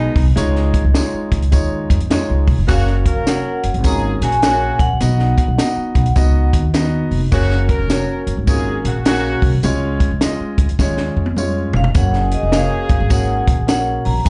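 Joyful and warm, this excerpt of uptempo 1960s-style soul swings at 104 BPM in F# major. A pizzicato upright bass sits woody and up front, a compact cocktail kit adds a punchy kick and high-tuned snare with a fill at 10.8 seconds, and a jingly tambourine sits quietly in the background, while a grand piano with audible action noise and slapback echo comps alongside a tight horn section playing a vibrato-rich second line through plate reverb. A metallic, ringing vibraphone carries the melody from 2.7 seconds and returns at 11.8 seconds, all heard as a live club gig through the venue's PA with a dulled top end.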